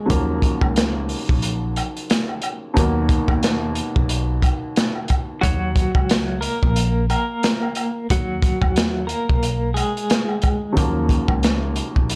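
A woody upright piano opens this dark, gritty boom-bap hip-hop cut in Eb minor at 90 BPM, with a thumpy pizzicato upright bass, a saturated, crunchy breakbeat kit with a tight kick sitting up front, and a band-limited egg shaker and woodblock in the background, until a clean, compressed electric guitar melody with tremolo and analog delay takes over from 5.4 to 10.7 seconds, after which the piano returns over a dry, gritty mix.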